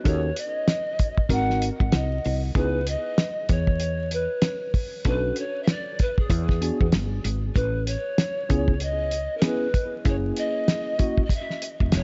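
A worn, slightly out-of-tune tine electric piano with tape echo opens this nocturnal, smoky jazz-hop excerpt at 96 BPM. A swung 16th-note groove follows on a cloth-damped, thuddy drum kit with a fat snare, tight kick and vintage 12-bit sampler grit, and a growly, round fretless bass with subtle chorus sits up front beneath it. An airy bamboo pan flute with vibrato and a soft, chiffy attack carries the melody through its own tape echo over chords moving from D#m7b5 to Amaj7 and F#7, and the piano drops out at 11.2 seconds inside a small, echo-heavy room with vinyl crackle and a dark, rolled-off top.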